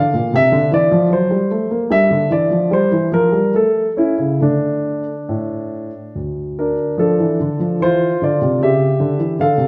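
A warm concert grand piano carries this short classical passage alone, a baroque-style suite movement in D minor that feels radiant and serene despite its minor key. It moves in an unhurried 3/4 at roughly 67-77 BPM, with rubato giving the pulse a gentle, breathing flexibility. The piano sits up front in the sound, spanning from a deep bass at D2 up to F5, and a lush recital hall reverb with a 1.4-second decay surrounds every note. The harmony passes from D minor through F# diminished and A major before returning to D minor. At 7.0 s a second section begins, closing on C# diminished as this 9.7-second fragment of a longer piece breaks off.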